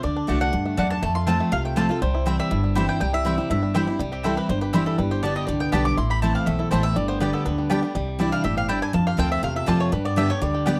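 Virtuosic and lively, this fragment of a longer bluegrass piece in C major races along at 243 BPM in a straight 4/4, with a twangy, fingerpicked banjo and a bright mandolin sharing the melody while a full-bodied, up-front steel-string guitar picks the accompaniment and a woody, thumpy upright bass holds the low end. A second mandolin adds stabs from 0.3 seconds, and both it and the banjo carry a slapback echo, while a mandolin solo arrives at 4.0 seconds as the chords move through Gadd9, Am and G. The sound is a dry, close studio recording in a 1970s style with light reverb.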